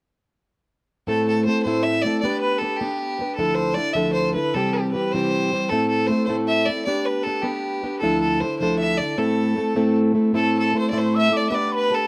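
Celtic folk in a straight 6/8, this short clip from a longer piece feels wild and driving, with a clear, earthy fiddle carrying the melody up front with light vibrato, over a boxy fingerpicked acoustic archtop guitar that plays accompaniment from 1.1 seconds on. A mellow, hollow tin whistle with an airy chiff slips in at 10.4 seconds as a second line in the background, its high register carrying lifted highs. The parts sit in a wet small room, and the harmony circles around A minor.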